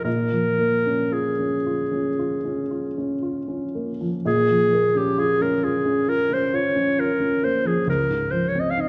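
Classical impressionist duo, a wistful and mysterious fragment of a longer piece, unfolds at an unhurried, rubato pace as a smooth-topped clarinet sings the melody in a classical style, set up front over a dark, mellow baby grand piano. The piano's intimate, natural tone carries audible action noise and a short sustain, and the whole short passage sits in a wet recital hall reverb. The same phrase is stated twice, restarting at 4.3 s before the harmony shifts to a Dbmaj9 chord at 7.9 s.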